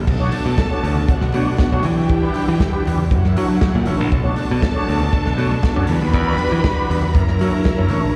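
A bowed studio string section holding sustained chords with expressive portamento and a bright, punchy picked electric bass open this driving, glamorous disco excerpt, joined at once by a second string line with slapback echo, a dark, clean guitar through wah and harmonic tremolo, a tight, dry soul drum kit with dark cymbals, and very quiet congas at 0.3 seconds, all carried in small-room ambience heard through a venue's PA and recital hall reverb over a Bm9 to Em9 to F#7b13 progression.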